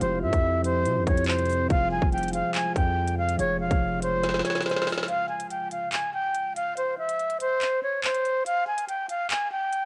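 Drill-flavored hip hop in a half-time feel, this short, ominous cut from a longer piece has the hazy, lo-fi character of a home cassette recording with a moderate spring reverb around it. A breathy, close-miked concert flute carries the melody up front with a straight tone and soft attack, running through the whole 9.9 seconds under a low-pass filter and tape coloring. For the first stretch it sits over a mellow, clean tine electric piano, a deep, moody pad of detuned sawtooth voices with a sub octave and a moving notch, and a heavy, aggressive 808-style bass thick with distortion and tube saturation, moving through C over F, F minor and D-flat. The drill kit is electronic, with a hard-clipped kick, woody snare, crisp hats and handclaps roughened by 12-bit sampler grit, and it plays a fill from 4.2 seconds. At 5.1 seconds the piano, pad and harmony drop away into a break, leaving only the flute and drums.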